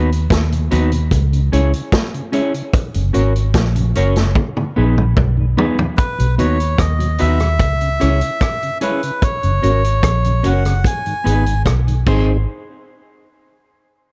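This roots reggae excerpt has a meditative, serious mood in a straight 4/4. It opens with a foam-muted fingered electric bass up front, its tone round and punchy. Beside it sits a vintage acoustic drum kit carrying 12-bit sampler grit, with dark cymbals, hi-hat, a medium-tuned snare, rim clicks, toms, kick and crash, and a drum fill arrives at 4.4 seconds. A clean, fingered electric guitar and a mellow tonewheel organ, with key click, vibrato and a slow rotary speaker, fill in the harmony, the organ tucked in the background, over a repeating B, C#m, F#, G#m cycle that closes on G#. At 6.0 seconds a reedy, breathy melodica takes the melody, close-miked and dry with a nasal edge, until 11.6 seconds. The production is dark and warm, with nothing above 7.9 kHz, light reverb and small room ambience.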